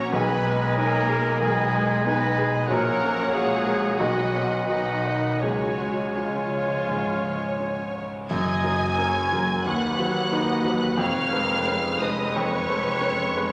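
A clear, up-front grand piano carries the melody through this passionate, lyrical excerpt from a romantic movement for piano and orchestra in F# major, moving with rubato at roughly 81-96 BPM in 4/4. Smooth, vibrato-rich violins also sing the melody high above, with a focused second violin line, oboe and a dark, distant clarinet adding counterlines, while expressive violas with portamento, a lush cello and double bass foundation, a roomy bassoon and a very quiet mellow horn section fill out the harmony. The horns and woodwinds drop out between about 7 and 8 seconds as the full band accents the arrival of the F# chord at 8.3 seconds, where a soft tuba joins the bass, after dark, dry cymbals and bass drum sound faintly from 5.4 seconds, all set in a wet scoring-stage reverb.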